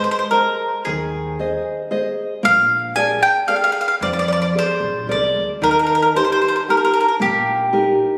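Italian folk serenade in a lively, sunny 3/4 at 113 BPM in Ab major, where an up-front picked mandolin with woody double strings carries the melody over warmly fingerpicked classical nylon-string guitar accompaniment, joined at 0.9 s by a quieter pizzicato upright bass with bright, growly steel strings, all heard in this short fragment through a phone recording in a concert hall with moderate reverb, added studio reverb and compression.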